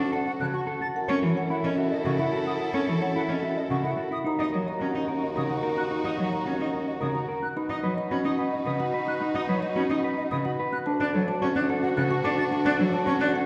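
In a straight three-four pulse, this hypnotic, propulsive minimalist classical passage, cut from a longer piece, sets a woody soft-mallet marimba melody in the background over a soprano saxophone second line with a smooth top, a bowed, up-front cello accompaniment, lush sustained chords from a symphonic violin section, dark, clean fingered electric guitar arpeggios, a vintage-toned bassoon bass, and pure silver flute arpeggios entering at 0.3 seconds, all heard from further back in a reverberant scoring stage as the chords move from D through F#m7, D#m and B before returning to D at 10.9 seconds.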